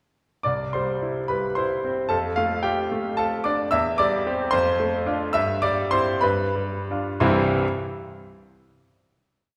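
This is a romantic classical character piece for solo piano, brief but complete, with a warm, passionate mood. A bright grand piano carries everything alone, pairing a tune doubled in octaves with rocking broken chords in a lilting 6/8 that moves with free rubato. Its brilliant, present tone sits up front, with short sustain, while a wet recital-hall reverb surrounds it and places the listener further back in the room. The harmony moves through C, Dm/F, C/E and Dm7/F before settling onto C/G and G7. The music slows from about 2.9 seconds, and a final C chord at 7.2 seconds brings the piece to rest as the hall rings on.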